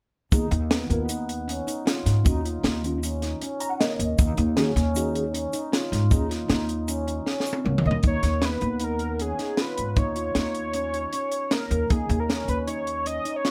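Brooding and intricate, this progressive instrumental excerpt moves in an uneven 5/4 over an Eb pedal, where a mellow, chorused tine electric piano (until 6.3 s, with a brief fill), sharp-stroked ringing handpan arpeggios, woody pizzicato upright bass, a dry punchy cocktail kit and a grainy shaker in the background are joined after a drum fill by a bold, detuned sawtooth lead doubled in octaves that carries the melody from 7.9 s under light reverb.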